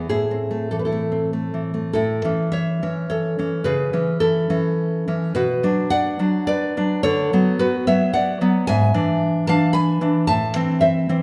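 A nylon-string guitar plays alone throughout this brief, melancholic excerpt of a romantic classical piece, its full-bodied, deep tone sitting up front in the sound. The playing is fingerpicked and intimate, moving in 3/4 with a rubato feel that drifts between 95 and 114 BPM in A major. After a short opening on A minor, a new section begins at 1.9 seconds on A major, passing through A/C#, B minor, Bm/D and E7/G# before settling back on A minor near 10.3 seconds. The guitar covers a range from G#2 up to B5, giving the harmony a rich low end beneath its upper notes. A wet recital hall reverb surrounds the instrument, lending the recording the resonant air of a church or concert hall.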